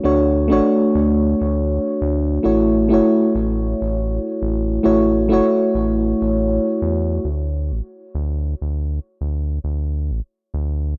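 Sunset chillout in a blissful, relaxed mood, moving at 100 BPM in 4/4 with a light swing on the sixteenths. A mellow FM electric piano carries the accompaniment, its soft, full-bodied tone sitting up front with a chorus shimmer, tape echo and a faint noise layer under each fast-struck, decaying note. It moves from Dmaj7 to A6 before dropping out at 7.3 seconds. Beneath it, a round analog bass blends sawtooth and sine into a deep, dark, sustained low end, continuing on its own under a bare D5 until 10.9 seconds. Light reverb surrounds a dry, gritty recording, and this brief passage is cut from a longer piece.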